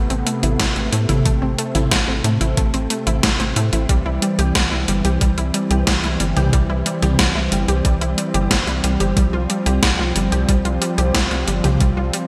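An up-front gated 80s digital drum machine drives this cinematic, moody synthwave clip at 91 BPM, its hi-hat, toms and snare treated with gated reverb above a knocking, layered electronic kick that enters at 0.6 seconds. A tight, punchy sawtooth sequencer bass pumps beneath a brassy, detuned analog pad that also pumps as it sustains chords with chorus and vibrato. Meanwhile a round analog pluck spins arpeggios through chorus and delay over Amadd9, C and Fsus2, all within a bright 1980s-style digital production and a lush hall reverb.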